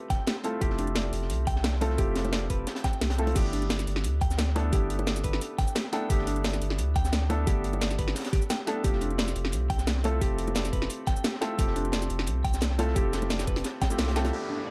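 A deep, round sub bass sits up front in this dreamy liquid drum and bass excerpt at 175 BPM, under a knocking layered electronic kick, a drum and bass kit with a cracking snare, metallic hats, cabasa and crash, a dark, gritty breakbeat kit in the background, and round, low-tuned bongos, while a natural concert grand piano and clean, fingered electric guitar arpeggios, both filtered with tape echo, drift over Fmaj9 and G69 in a small room with light reverb, until the kick drops out at 14.0 s for a band accent and an electronic downlifter closes at 14.3 s.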